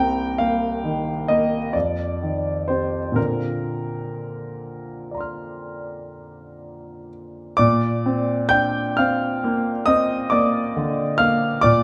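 Set in a moderate recital-hall reverb, this short, serene passage cut from a longer impressionist classical piece features a solo grand piano with a clear, polished tone, long sustain and an up-front presence. Played with a rubato feel in 9/8, the piano spans a broad range from its low bass to high treble, drifting through hazy harmonies from Cm7 to Fsus2 before settling on Bbadd9 at 3.2 seconds. The opening idea returns at 7.6 seconds and carries the piece through to its close at 11.8 seconds.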